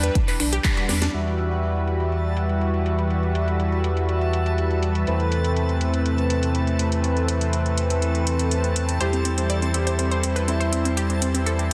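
A lush, warbling unison pad, a bright detuned pluck arpeggio, a deep saturated sub bass and a tape-warm house kit of finger snaps, handclaps, metallic low-passed hats and a cracking snare open this emotional, expansive progressive house excerpt in E minor at 122 BPM, all pumping to the sidechain, with a punchy kick landing briefly as smooth supersaw stabs enter at 0.6 s and open into a filter sweep from 1.1 s, a dreamy reversed granular texture swells in behind from 2.1 s, and a clear, intimate grand piano melody with delay arrives alongside the returning pluck at 9.0 s over a dense, heavily limited modern master.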